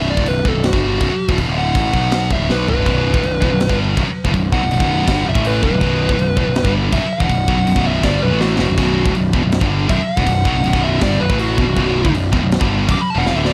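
A straight 4/4 pulse at 162 BPM drives this relentless, heavy metal excerpt in B minor, with a tight acoustic kit entering at 0.2 seconds: tight kick, medium-tuned snare, toms, and crash and splash cymbals with a rolled-off top, plus short drum fills along the way. A dark, smooth, overdriven lead guitar solos over a bright, distorted high-gain riff guitar and a growly fuzz bass sitting up front. A double-tracked overdriven rhythm guitar joins in the background at 2.8 seconds, and a very quiet scooped high-gain guitar follows at 2.9 seconds, all within a small room and a dark, warm production.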